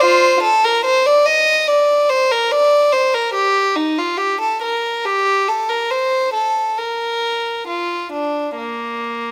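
A close, detailed recording places a single rich violin up front in a moderate recital hall reverb, its reedy gut-string tone carrying a flowing, radiant baroque-style suite movement in Bb major, bowed in period style with rubato at around 67-73 BPM in 4/4 across this 9.3-second excerpt cut from a longer piece.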